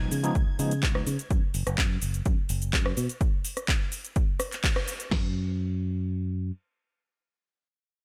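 A straight 4/4 groove drives this joyful, feel-good slice of filtered disco house, built on a dry analog drum machine with a punchy kick, snare and crash, layered with an overdriven house kit of metallic hi-hats, cabasa, handclaps and rim clicks re-recorded in a large room, its hats and percussion pumping to the sidechain. A fingered electric bass sits up front, warm and punchy with its own pumping, carrying on until 6.5 s, after the whole band hits an accent at 4.6 s. In the opening moments, a reedy, gritty electric piano through a combo amp shimmers with tremolo and phaser until 1.1 s, while a rich bowed string section with vibrato and a lo-fi 12-bit sampler grain hovers softly in the background.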